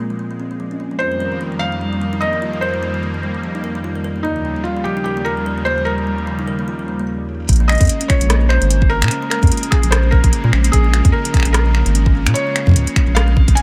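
A detuned sawtooth pad with chorus holds smooth, slow-attack chords while a woody, thumb-plucked kalimba rings out arpeggios through analog delay, opening this glitchy, eerie IDM excerpt in Bb dorian at 148 BPM with a 16th-note swing. At 1.0 seconds a felt-muted upright piano enters with a soft, intimate melody, its mellow tone also trailed by analog delay. A drum fill at 7.3 seconds brings in a booming analog drum machine of finger snaps, metallic hi-hats and rim clicks, overdriven and filtered, with the sound of a small room around it. From 7.5 seconds a deep electronic kick enters alongside a round, dark analog bass that sits up front, the bass's fast attack and sustained sine-and-triangle tone anchoring the move to Bbm7. Light reverb and digital ambience give the echo-heavy mix a hazy, floating space.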